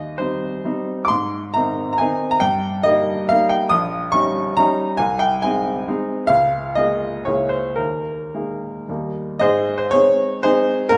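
Classical romantic triple-time dance in 3/4 for solo baby grand piano, rustic and graceful, with dotted rhythms and rubato between 106 and 151 BPM, moving from Eb major to Ab major at 3.7 s in a tuning of A4 = 435 Hz, the clear, natural, up-front piano with short sustain spanning Bb1 to Eb6, heard in a wet recital-hall reverb with lossy compression artefacts, in a brief cut from a longer piece that shifts to a new section at 9.4 s.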